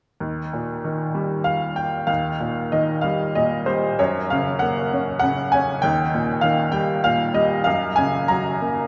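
A bright, woody upright piano, slightly detuned and up front, plays alone from 0.2 to 8.9 seconds in a relaxed, sunny stretch of lyrical classical solo piano in 3/4 at 96 BPM, taken with rubato, tuned to A4 = 441 Hz, moving between Eb and Gb chords across a range from Eb2 to Bb5, and bathed in a long cathedral reverb from a church or concert hall, cut from a longer piece.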